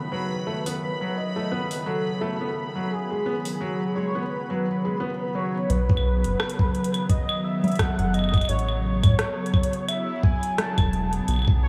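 A dreamy mix soaked in plate reverb, with a small room's ambience around it, frames this wistful, intricate IDM excerpt in swung 4/4. A hollow, flute-like pad holds sustained chords throughout, roughened by 12-bit sampler grit and ensemble chorus, while a velvety, detuned synth lead carries the melody with vibrato and analog delay. In the opening half, a bubbling texture of random filter steps sits high above, and a felt-muted upright piano plays intimate arpeggios up front, its action noise audible through a low-pass filter and diffuse delay. An analog drum machine taps claves, congas, metallic hats and rim clicks, re-recorded in a large room. At 5.7 s a rubbery square bass arrives prominently with a resonant filter pluck and a moving notch, and a compressed, pitched-up kick with a gritty thump joins at 5.9 s.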